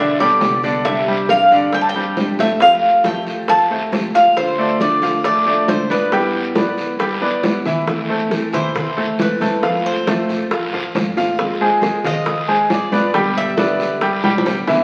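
Latin Cuban son in a relaxed, danceable guajira vein at 137 BPM, this excerpt puts a metallic, double-strung tres melody and a brilliant grand piano's arpeggios up front over a full-bodied fingerpicked steel-string guitar, a woody pizzicato upright bass, soft-handed congas, tight high-tuned bongos and a raspy guiro, with drum fills at 7.4 and 14.2 seconds framing a tres solo from 7.9 seconds as the chords move from Gadd9 through Dm and Am to Ab6 and G, all bathed in a wet studio reverb and the crackle of a very old 78 rpm record.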